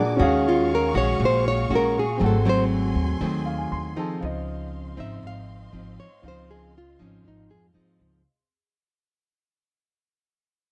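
A fading bossa nova fragment opens with bright, fingerpicked nylon-string guitar chords, a natural-sounding grand piano that drops in fills at the start and again from 3.2 to 4.2 seconds, and a bowed string section holding smooth, expressive chords with vibrato and portamento, while a woody, thumpy pizzicato upright bass joins at 0.2 seconds. From 0.5 seconds a warm, up-front classical guitar carries the solo melody, with a touch of finger squeak, over a sophisticated Ebm11 to Ab7b9 to Dbmaj9 progression. The mood is sunny and refined, captured in a dry, close 1970s-style studio sound with light reverb.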